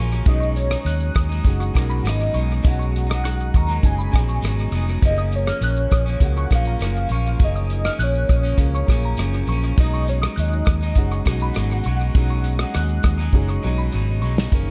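Indie pop with a bedroom-pop haze, this short cut from a longer piece moves at 101 BPM in a straight 4/4 and feels nostalgic and dreamy, drifting between B6 and F#maj7 chords in an echo-heavy small room. A velvety, detuned synth lead carries the melody from 0.3 seconds, its sawtooth-and-square unison thickened by a sub octave, ensemble chorus, tremolo and tape echo. Beneath it, a slightly broken-up picked electric guitar adds compressed accompaniment with subtle chorus, warbly pitch drift and tape echo, while a woody upright piano with audible action noise sits in the background through a cassette-tape coloring. A glassy FM synth bell, crystalline and warbling, traces a high second line with tremolo, analog chorus and tape echo. Up front, a dark, round, foam-muted fingered bass pairs with a loose acoustic kit of tight kick, medium-tuned snare, rim clicks, hi-hat and shaker with a rolled-off top, joined by a very quiet, jingly tambourine, and the drums close with a fill from 13.3 to 14.5 seconds.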